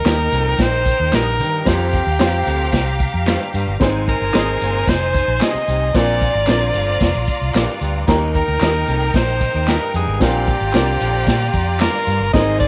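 A straight 4/4 groove at 112 BPM drives this joyful, uptempo 1960s-style soul excerpt, with a swinging big-band drum kit laying down hi-hat, punchy kick and a medium-tuned snare, backed by very quiet, close and dry handclaps, tambourine and tube shaker. Underneath, a vintage foam-muted fingered electric bass sits up front with a round, dark, amped tone, while a mellow, worn upright piano adds woody, slightly detuned accompaniment with audible action noise. An edgy alto saxophone carries the melody from the first second, forceful and punchy with vibrato, as a bright, lush studio violin section plays a distant, intense second line. A warm baritone saxophone joins at 0.3 seconds with a smooth-topped, jazz-style riff full of scooped notes, sitting in the background, and a slightly broken-up, lo-fi electric guitar through a small old amp drops in very quiet stabs until 11.9 seconds. The harmony moves through Eb, Fsus2, Ab and Bbadd9, then returns to Eb before closing on Bbadd9, all set in a small room with light reverb and a softened, rolled-off top end.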